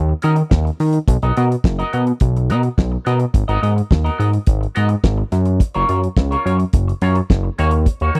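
A fat, nasal analog bass with detuned sawtooth and square-wave tones and a plucky filter drives this glamorous, danceable disco excerpt in straight 4/4, sitting up front beside a damped 1970s drum kit with a fat snare, tight kick and rolled-off top, while a clean, scooped electric guitar with wah adds picked accompaniment over Ebm7, Bmaj7, Abm9 and Gbmaj7 in a dry, close studio sound.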